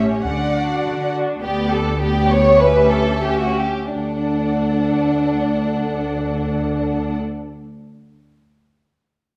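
Lively and spirited, this quick classical-period movement for string orchestra in D major, cut from a longer piece, moves in a rubato 2/4 at 84-104 BPM and slows from 0.8 to 3.9 s, with a smooth, quiet violin melody riding above a lush, up-front second violin line, expressive, distant violas in accompaniment, and a bass built from clear cellos and rich, focused double basses, all bowed with vibrato and set in the wet reverb of a recital hall as the harmony passes from D through G/D and Em13/D back to D.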